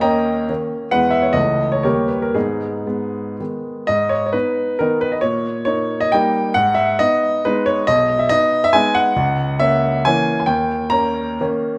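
Dotted rhythms in a triple-time dance give this wistful, capricious romantic piano passage, cut from a longer work, its character as a solo grand piano plays with free rubato, its intimate, up-front tone carrying long sustain and audible action noise into a moderate recital-hall reverb, while the brief opening gives way at 3.9 seconds to a second section that settles on dark minor and diminished harmonies before ending on a dominant chord at 10.5 seconds.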